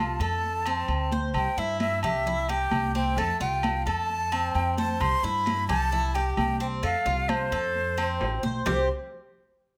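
A straight, easy 4/4 groove in Cuban son and guajira style sets a sunny, relaxed mood, carried by ringing metal-shelled agogo bells and timbales and high-tuned congas, played with hard hands for a bright, thin-skinned sound that sits in the background. Both percussion parts join at 0.2 s with a vintage, band-limited character. Underneath, an upright bass is plucked pizzicato on gut strings, its woody, thumpy low end placed up front. A Cuban tres spins picked arpeggios on double strings, some doubled at the octave, giving a sparkling, metallic edge in the middle register. Above it all, a breathy jazz flute with soft attacks and gentle vibrato sings the melody in a mellow, airy tone, the most prominent voice in the mix. The harmony sways between F and C under light reverb. The passage, cut from a longer piece, reaches a brief new section at 8.7 s on a C5 power chord just before the flute, tres and bass stop at 8.9 s.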